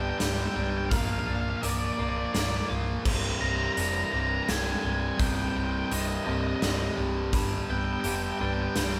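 A dark, fuzz-distorted lead guitar carries the melody over an overdriven electric guitar riff set up front, a clean, compressed twelve-string electric guitar playing picked arpeggios in the background, a round, amped bass and a big rock drum kit with crash, hi-hat, a punchy kick and a medium-tuned snare in a bright stone-room sound, giving this cathartic, melancholic post-rock excerpt at 84 BPM in 3/4 the feel of a band playing live in one room under moderate large studio reverb as the chords move from G/C through Bb/C to Cmadd9 and back to G/C at 7.3 seconds.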